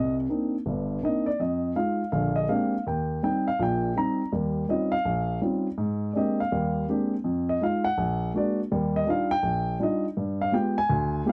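Solo jazz at a brisk 164 BPM with a swung feel, this smoky, late-night excerpt features a dark, mellow baby grand piano played up front and intimate, its action noise audible under light reverb in a dry, close 1970s-style studio sound, moving from Cm9 through Abmaj9#11 and Ebmaj9 before landing on G7b9 at 10.2 seconds.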